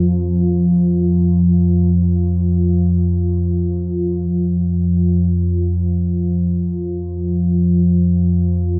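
A lone analog drone sits up front from the first moment, its detuned sawtooth and pulse-wave layers slowly shifting through pulse-width modulation, with a slow attack and long release that keep it sustained between F2 and F3. Chorus and delay thicken the drone, and a huge, wet reverb with an 8.1 s decay places it in a vast, echoing space. This short ambient fragment, cut from a longer piece, runs 8.8 seconds in free time and feels dark and desolate.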